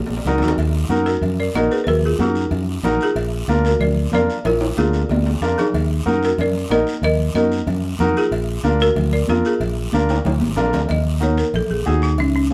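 A woody, rustic folk marimba played with medium hard mallets opens this passionate, danceable cumbia excerpt alongside a short drum fill, and the full band falls in within a moment. At 186 BPM in a straight 4/4, the harmony in Eb harmonic minor alternates between Ebm and Bb7. A round, up-front fingered electric bass anchors the low end. Bright, high-tuned congas sit in the background of a large room, while ringing metal-shell timbales and cowbell add further percussion. From 0.3 seconds, a polished upright piano adds present accompaniment, and a raspy, close, dry guiro scrapes quietly beneath. Drum fills mark the phrase turns, and at 10.9 seconds the dry hardwood marimba steps forward for a brief solo as the band, playing live together with light reverb, returns to Ebm.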